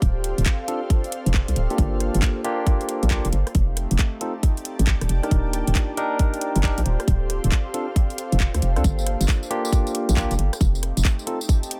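A skippy two-step garage groove at 136 BPM in 4/4 drives this late-night UK garage excerpt in G minor, its 16ths swung at 64%. An overdriven, tight electronic kick sits up front with a house kit of handclaps, metallic hi-hats, rim click and tambourine, both in small room ambience. A hollow, bouncy FM bass with a fast attack and mellow decay knocks along beneath them, also placed up front. From 0.7 s a bright, barky tine electric piano adds clean stabs through digital delay. Behind them, a smooth, detuned sawtooth pad holds sustained chords with chorus, tremolo and sidechain pumping, while an ethereal, airy pad floats higher through ensemble chorus, phaser and its own reverb, also pumping. The harmony cycles through Dm7, Gm7 and Ebmaj7 over a digital ambience, and the bass drops out at 11.0 s before the clip ends at 11.8 s.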